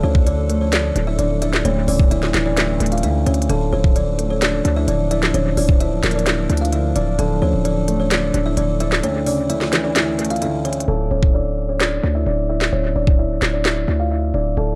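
A half-time trap beat at 130 BPM drives this melancholic, brooding hip hop excerpt in D harmonic minor, with a knocking kick, sharp snare, crisp hats and handclaps up front, while a distorted, heavy 808-style bass growls beneath. A buzzing, woody kalimba carries the melody through analog delay and a low-pass filter, supported by a dark, boxy concert grand piano with audible action noise and a warbly, nostalgic tape-like pad with chorus, both dropping out at 10.9 s. The kick is muted from 9.0 s to 10.9 s, and after 10.9 s the hi-hats fall away as the harmony settles on a bare D5, leaving kalimba, bass and the remaining drums in an echo-heavy digital ambience.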